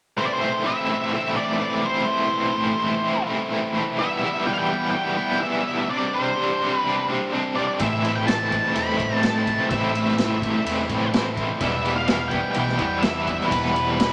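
A bright, overdriven, double-tracked stack guitar drives this trippy, dark psychedelic rock excerpt up front with a tremolo-tinged riff in A minor at 126 BPM, joined from the start by a distorted octave-fuzz lead melody, while a round, amped picked bass and a vintage acoustic kit (tight kick, medium-tuned snare, ride, rolled-off top and a pumping small-room sound) enter at 7.8 s, everything set in moderate studio reverb.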